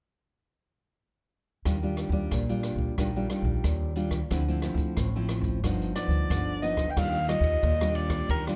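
A straight 4/4 samba and choro groove sets a festive, playful mood in this short cut from a longer piece, with fingerpicked nylon-string guitar, upright bass and an open jazz drum kit all starting together at 1.7 seconds. The guitar sits up front with a bright, fresh-stringed classical tone, while the pizzicato bass adds a woody, growly low end. The drums sound natural in a studio room, pairing dark cymbals across crash, ride and hi-hat with a boomy kick and rim clicks. At 6.0 seconds a mellow soprano saxophone takes the solo melody up front, its jazz phrasing coloured by vibrato and a punchy yet roomy, distant quality. The harmony moves from Ebmaj9 through Dm9 and G7b13 before settling back on Ebmaj9 under a light reverb, and the band stops at 8.6 seconds.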